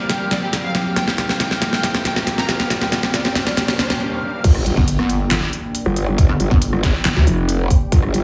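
A half-time 4/4 pulse at 138 BPM drives this chaotic, heavy wobble dubstep cut in G minor. It opens on a build-up where a drum fill from the dubstep kit's deep snare, crisp hats, handclaps, rim clicks and crash runs under a floating, bowed studio violin section with digital delay, a lush, airy sawtooth pad with chorus and sidechain pumping in the background, and a very quiet electronic riser and impact. After a brief break at 4.0 seconds, the drop lands at 4.4 seconds with a punchy, layered electronic kick and an up-front growl bass, aggressive and saturated through a formant filter with overdrive and chorus, joined for a stretch by a pulsing, detuned pluck wobble bass, all set in a heavily compressed, radio-like mix with a moderate digital room reverb.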